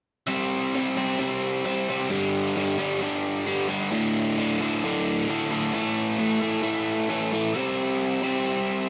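Rock at 132 BPM with an anthemic, restless mood: a single biting, overdriven electric guitar, picked, double-tracked and up front, drives a C5, G5, D5, A5 chord cycle from 0.3 s and returns to C5 at 7.5 s in this short cut from a longer piece, bathed in a wet studio reverb that gives it the feel of a band playing live in one room.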